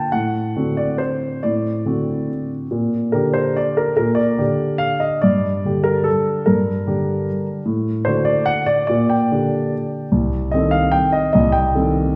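A warm, natural grand piano plays this short, bittersweet and elegant classical waltz alone in G minor, moving in a rubato 3/4 at roughly 134-157 BPM across a span from C2 to G5, through chords such as D7/A, Gm/Bb and Am7b5/C, all bathed in the wet reverb of a recital hall heard from further back in the room.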